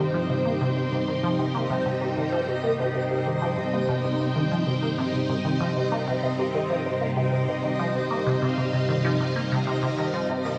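Heard through worn, warbling cassette tape with a drifting pitch and a wet concert-hall reverb, this short excerpt of ambient, sequencer-driven space music feels mysterious and expansive, resting on a single C minor chord. Up front, a lush vintage string machine holds soft-attacked chords through phaser, ensemble chorus and shimmer reverb, while a juicy, squelchy blip pluck with ring modulation and a filter sweep repeats a low riff drenched in phaser, chorus, tape echo and shimmer. Far in the background, a twinkling granular texture sustains a single high note with an octave-up shimmer.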